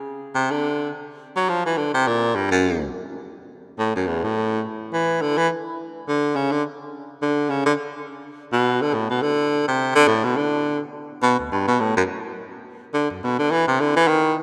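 Swinging briskly at 210 BPM in 4/4 with a lilting eighth-note feel, this short jazz fragment in D major carries a sophisticated, playful mood. A lone baritone saxophone takes the spotlight from 0.3 to 14.3 seconds, its bright, vibrato-laced tone sitting up front as it moves through two sections, shifting at 8.3 seconds. A lush plate reverb gives the rough home-demo sound a long, glowing tail.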